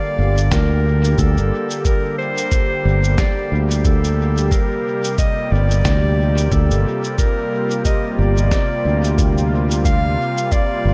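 A breathy, close-miked clarinet melody with dub echo and a detuned, warbling sawtooth pad with chorus open this deep, spacious ambient dub excerpt in G minor, resting on a single Gm7 chord at 90 BPM with a lightly swung 16th-note feel. A warm, fingered electric bass enters at 0.2 seconds, direct and amped and sitting up front, joined at 0.4 seconds by a compressed, sampler-style cabasa and fat snare carrying dub echo, then a thumpy, muffled kick at 0.5 seconds. Light reverb gives the mix its airy sense of space.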